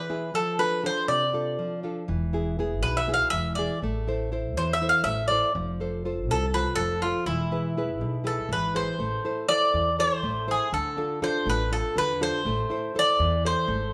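In a straight 7/8 at 243 BPM counted in eighths, this intense, dramatic snippet of Greek folk puts a bright, metallic bouzouki melody on double strings, some of them octave-doubled, up front over a small, fingerpicked nylon-string guitar, while a woody, thumpy pizzicato upright bass joins at 2.1 s, all in a live room with a moderate large-studio reverb as the harmony moves from F6 through E and Am before turning to Dm and back to Am.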